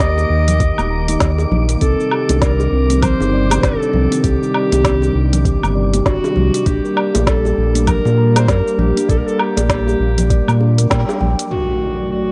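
Organic downtempo at 99 BPM with a gentle 16th-note swing, this hypnotic excerpt drifts over Eb, Cmadd9 and Gm/Bb before landing on D, with a distant, roomy clarinet carrying the melody through digital delay above a chorused, detuned analog pad that pumps in the background, and a close-miked steel tongue drum ringing out pure, meditative arpeggios. A deep, round analog bass sits up front with sidechain pumping, joined by a soft electronic kick, a small-room electronic kit with woody snare, crisp low-passed hats, cabasa and woodblock, saturated bongos and congas tucked behind, and a faint breathy wind-like noise layer. The whole mix carries a worn, warbling cassette-tape drift under light reverb, and after a band accent at 10.9 seconds the rhythm section and other layers fall away as an electronic impact arrives at 11.5 seconds beneath the lingering clarinet and pad.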